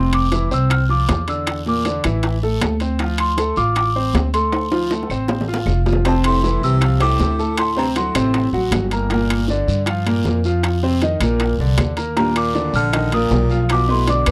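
A dry, close 1970s-style studio sound frames this sultry, driving Afro-Cuban jazz excerpt in D minor at 157 BPM, with a bell-like, delicate celesta carrying the melody over a brilliant grand piano and a thumpy, gut-string pizzicato upright bass, both up front. Low-tuned bongos sit in the background beside ringing metal-shell timbales, very quiet woody claves and a raspy guiro, and a drum fill arrives at 4.5 seconds. At 6.1 seconds a clear baritone saxophone with vibrato joins as a second line, and after a gap the celesta and saxophone return together at 12.2 seconds.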